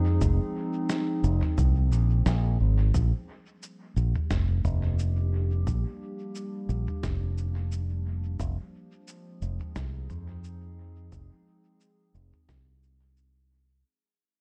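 Soaked in echo under a light reverb, this short cut from a longer ambient dub piece sounds hazy and peaceful, sitting at 88 BPM in 4/4 with a gentle 16th-note swing in B-flat mixolydian. A warbling, detuned pad carries sustained chords throughout, its dark, nostalgic lo-fi tone blending square, triangle and sine waves with wave-folding, slow attacks and long releases, all bathed in chorus and its own reverb. Up front, a punchy fingered electric bass holds the low end from the opening moment. A deep, overdriven electronic kick sits in the background with a large-room sheen, alongside a muffled, compressed sampler-style kit of shaker, medium-tuned snare and toms, pitched down and tape-warm, its hits trailing into dub echo. The harmony moves from Fm7 to Bb6 at 2.9 seconds and back to Fm7 at 8.4 seconds, while from 2.9 seconds the bass passes through a filter sweep and the music fades out.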